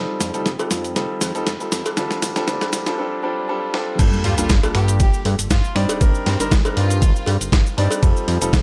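The knocking electronic kick drum lands up front at 4.0 seconds, marking the drop in this sleek, sensual nu-disco excerpt in G minor at 119 BPM with a light 16th-note swing, after a build-up where a very quiet riser, swell and sub drop, a gritty sampler-style soul kit with snare, hi-hat, snaps, shaker, ride and crash, and a cowbell gather over chords moving from F7 to Dm7. A fat, detuned analog bass and a concert grand piano with sidechain pumping and tape echo carry the harmony throughout, through Gm7 and Cm7/G. A rich, bowed violin section with vibrato sits in the background from 4.2 to 7.3 seconds, softened by a low-pass filter and digital delay, while a high-passed digital ambience hangs around the mix.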